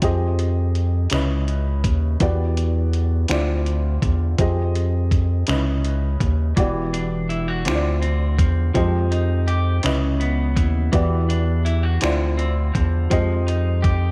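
A rubbery, hollow square-wave bass sits up front in this sultry, yearning slow R&B fragment in 6/8 at 55 BPM, its plucky filtered notes sustaining under a cycle of minor-ninth chords. A gritty, compressed sampler-style kit of finger snaps, hi-hat and thumpy kick carries the sound of a large room, while a dark, intimate baby grand adds mellow accompaniment with audible action noise. At 6.6 seconds a clean, picked electric guitar enters as a second line, touched with slapback echo, all set in light digital reverb.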